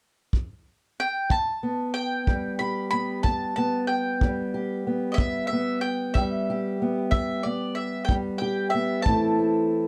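Smoky and mournful, this short excerpt from a longer acoustic country blues piece moves at a slow 62 beats per minute in a straight 12/8, set in E minor. A tight, up-front kick drum with brushes, recorded in a small room, opens at 0.3 seconds, and the mandolin joins at 1.0 seconds, carrying the melody between D5 and B5 with a round, picked tone from its double strings. At 1.3 seconds the fingerpicked steel-string parlour guitar enters with the accompaniment, boxy and dark, ranging from E2 up to G4 as the harmony settles on Em. The chord shifts to Am near the close at 9.1 seconds, giving the last moments a gentle turn. Light reverb and a dark, warm production keep all three players close and intimate.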